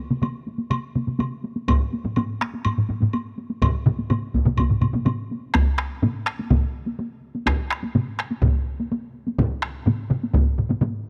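Two close, dry taiko layers struck with heavy and hard sticks open this driving, ceremonial Japanese traditional drum-ensemble excerpt at 125 BPM in a straight 4/4, joined at 0.2 seconds by a compressed, woody woodblock that plays until 5.2 seconds, while at 1.7 seconds two more taiko parts arrive, one heavy-sticked and one hard-sticked with a saturated, up-front punch, all captured as a close 1970s-style studio recording with light reverb and small-room ambience.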